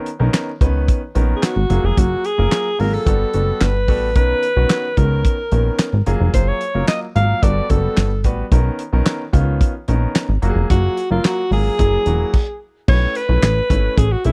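A dry, close 1970s-style studio sound in a small room frames this danceable, feel-good early-eighties boogie funk at 110 BPM in B lydian, cycling through Bmaj9, F#maj9 and Gmaj9 chords. An up-front damped acoustic drum kit with a fat snare, tight kick, hi-hat, handclaps and crash cymbal sits beside a plucky, punchy analog bass, while a clear, polished baby grand piano supplies accompaniment. A breathy alto saxophone with light vibrato and slapback echo carries the melody from 1.4 seconds, and a brief stop at 12.3 seconds gives way to a B9sus4 chord at 12.9 seconds.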